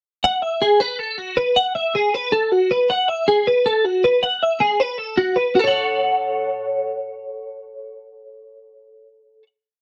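A twelve-string electric guitar carries this short rock piece entirely alone, its bright, twangy, clean picked tone sitting up front with a compressed edge and a shimmering ensemble chorus. The mood is wistful and restless, set in F# minor and moving in an uneven 7/8 at 316 BPM counted in eighths with a straight feel. The guitar circles an ostinato in the range from F#4 to F#5, opening on an F#m11 chord that colors the phrase with an unsettled longing. At 5.5 seconds the figure gives way to a plain F#m final chord, and the guitar stops at 9.5 seconds. Light reverb surrounds the instrument, and the overall production leans dark and warm despite the sparkle of the strings.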